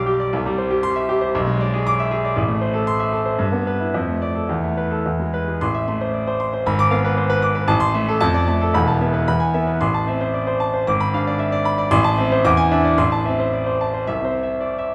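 A classical virtuoso piano study in A minor, this stormy, passionate passage moves at roughly 106-119 BPM in 2/4 with a rubato feel, cut from a longer piece. A clear, polished concert grand plays solo and up front from E1 to D6, its deep bass and short sustain set in a wet recital hall reverb. The harmony turns through restless minor-key progressions, with Esus4 resolving to E before settling back on Am and G#dim7 pulling back to Am, and a second section begins at 5.6 seconds.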